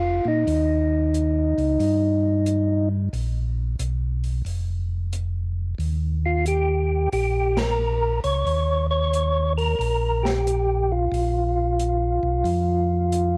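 A swung 4/4 groove at 90 BPM carries this greasy, bluesy soul jazz organ trio excerpt, where a percussive tonewheel organ with third-harmonic percussion plays the melody between Eb4 and Db5 while a mellow, round tonewheel organ with audible key click holds down the bass, both up front through a slow rotary speaker over Eb7 and Bb5 chords. An acoustic jazz kit of hi-hat, ride and medium-tuned snare, dark and smooth with a rolled-off top, sits well back from 0.5 s, and the band hits an accent at 7.5 s. The small room ambience carries some lossy compression artefacts.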